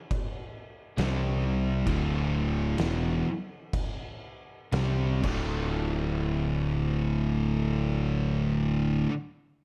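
A dark, warm production with a moderate large-studio reverb and small room ambience frames this ominous, sludgy stoner and doom metal fragment in D minor, crawling along at 56-70 BPM in 4/4 and slowing down through its opening stretch. An oversized, low-tuned acoustic drum kit with a punchy kick, fat snare and dusky crash cymbals sounds from the start and stops at 5.5 seconds, its gritty, saturated tone set in a bright stone room. At 1.0 seconds a pair of thick fuzz guitars, one up front and one in the background, joins a double-tracked, crunchy overdriven guitar and a round, growling picked bass with a warm amped overdrive, all grinding through power-chord riffs on C5 and D5 before settling on D minor.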